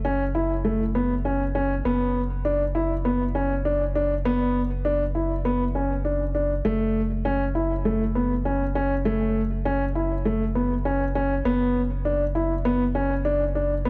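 A small, lightly reverberant room frames this moving, hypnotic piano and strings electronica in F# minor at 100 BPM, where an intimate, mellow grand piano with audible action noise and digital delay plays a riff between A3 and E4 while a round, nasal analog bass sits on a deep, sustained F#1, both up front for the full 13.9 seconds.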